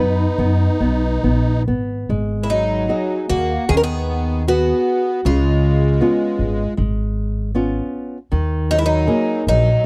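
A picked twelve-string guitar, a musette accordion, a nylon-string guitar and an upright bass all sound together from the opening moment of this mournful, longing fado-style ballad in G# minor, cut from a longer piece. The tempo drifts between 68 and 80 BPM in a rubato 4/4, resting on B before moving to G#m7 at 2.1 s, then C#7 at 5.3 s and D#sus4 at 8.3 s. The twelve-string carries the melody up front, its octave-doubled strings bright and shimmering with an audible finger squeak. Beneath it, the reedy accordion, in wet musette tuning, plays a close-miked second line. The fingerpicked nylon-string guitar supplies a small, warm accompaniment, and the pizzicato upright bass, woody and growly on steel strings, sits prominently at the bottom of a dry, close 1970s-style studio sound with little reverb.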